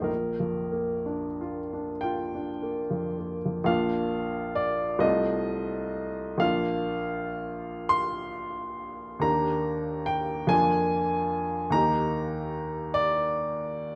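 This romantic classical nocturne moves in a slow, rubato 6/8, its dotted quarters pulsing at around 30-50 BPM, so the pulse breathes freely rather than marking strict time. A solo upright piano carries the whole piece, sounding woody and natural with long sustain, and it sits up front in the mix across a range from F1 to C6. The mood is nostalgic and tender, settled in Bb major, with harmonies that drift from Bb through F7/C and back home before opening onto Ebmaj7 near 9.2 seconds, then Bb7/F and Eb. A short opening passage gives way at 3.7 seconds to a longer second section that carries these richer chords. Close, detailed microphones catch the instrument intimately, while a moderate recital hall reverb adds gentle space around it. Taken from a longer piece, this fragment lasts 14.0 seconds.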